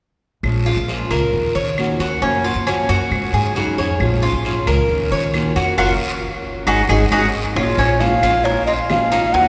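A bright, metallic Cuban tres sits up front with picked arpeggios on its doubled strings from 0.7 seconds, setting a nostalgic yet danceable Cuban son and guajira groove at 135 BPM in Bb minor. Beneath it, a thumpy upright bass with gut strings plucks dark, woody lines, while a small, warm nylon-string guitar adds fingerpicked accompaniment. Very quiet, dry claves, a raspy guiro and, later, round, low-tuned bongos in the background fill out the percussion. The harmony cycles through Bbm7, Ebm7, Gbmaj7 and Ab7sus4, and the band hits an accent before a new section opens at 7.6 seconds on Bbm. There a breathy, hollow jazz flute with vibrato and a soft attack takes the melody, the loudest voice in the mix. The whole excerpt rings in a cathedral-like church or concert hall reverb with a long, wet tail.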